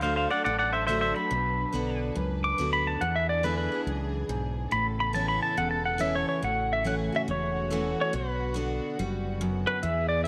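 A twangy, up-front pedal steel guitar leads this heartfelt, nostalgic honky-tonk and classic country excerpt, taking a solo through the first 6.4 seconds with fingerpicks, slide and volume swells over a swung 4/4 groove and chords moving from D through Bm and E7. Beneath it, a bright, full-bodied dreadnought acoustic guitar is picked in accompaniment, a round, punchy fingered electric bass holds the low end, and a dark, intimate string section bows soft-attack sustained chords sul tasto with light vibrato. A moderate echo chamber reverb and small room ambience frame the ensemble as the music shifts into a new section at 6.4 seconds.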